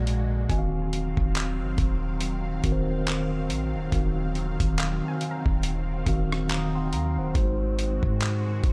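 Contemporary R&B at a slow 70 BPM in Eb dorian, with a late-night, longing mood and a swung sixteenth-note feel, built on an Ebm69 chord that shifts to Ab7 at 7.4 seconds in this short cut from a longer piece. A mellow tine electric piano sits up front over a deep, boomy 808-style bass and a gritty, compressed sampler-style drum kit with thumpy kick, hi-hat, rim click and handclaps that enters at 0.1 seconds. Behind them a lush, detuned unison pad adds chorus and phaser shimmer, while a soft, round pluck with tape echo glints in the background from 0.5 seconds, all in a dry, close room.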